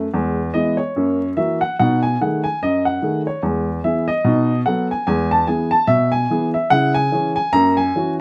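Swung eighths at a brisk 146 BPM in 4/4 drive this exuberant, playful stride-piano jazz fragment in E major, where a solo upright piano with a woody, natural tone and long sustain sits up front from start to finish across an 8.2-second span, captured close and detailed with light reverb and vinyl crackle.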